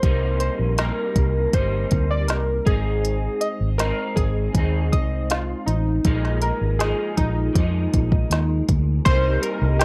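Mellow and hazy, this short cut of indie bedroom pop in C minor drifts at 80 BPM as round, sawtooth-edged analog keys carry the melody with subtle chorus and plate reverb over twangy, slightly broken-up guitar treated with ensemble chorus and vibrato, a foam-muted, punchy fingered bass, and an organic electronic kit with soft kick, woody snare and crisp hats up front, while a ringing soft-mallet vibraphone slips into the background at 9.1 s as the chords return from Bb7sus4 to Cm7.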